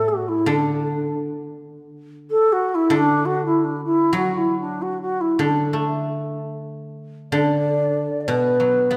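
A generous recital-hall reverb surrounds this short passage of Chinese traditional chamber music, lending it a spacious, resonant sound. Over its 9 seconds, the mood feels festive yet pastoral, and the time flows freely in a rubato feel. The mellow xiao carries the melody from start to finish, its bamboo, end-blown tone pure and softly attacked, colored by vibrato. Beneath it, the guzheng supplies accompaniment in a lower register, plucked with fingerpicks so its acoustic strings ring out with a silvery shimmer. Both instruments sit up front in the hall's glow, in a fragment cut from a longer piece.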